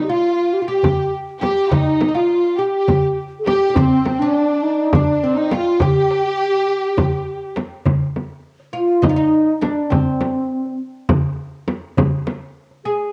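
Moving in a brisk 7/8 at 205 BPM counted in eighths, with a straight feel, this melancholic, longing Turkish makam ensemble piece is cut from a longer work and opens in G makam ussak before shifting to C makam nihavent at 7.9 s. A mellow, pure alto flute carries the melody up front, its vibrato and soft attack giving the line a yearning quality as it ranges from C4 to a slightly flattened A4. Beneath it, a fretless, plectrum-plucked oud with woody double strings plays a second line throughout, joined for the opening stretch by a rich, focused chamber violin section whose bowed vibrato drops out at 7.6 s. A crisp, small metal-shell darbuka and a close, dry frame drum set up the percussion, with the frame drum sitting forward in the mix. The whole ensemble carries the soft haze of a home cassette recording, set in a moderate spring reverb with studio ambience.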